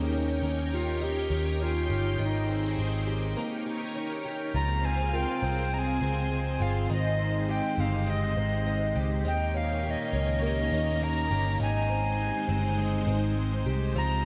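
A round, foam-muted electric bass sits up front in this dreamy, floating dream pop excerpt at 102 BPM in Ab major, anchoring a gentle progression that moves through Eb7, Abmaj7 and Dbmaj7. An airy tenor recorder with a tongued chiff carries the melody through diffuse ambient delay, while a shimmering, octave-doubled twelve-string acoustic guitar fingerpicks arpeggios under lush chorus and a vintage sawtooth string machine holds slow-attack chords through phaser and ensemble chorus. A very quiet, bell-like celesta adds delicate texture, and the whole mix is soaked in cathedral reverb, with a brief break from 3.4 to 4.5 seconds before the second section begins.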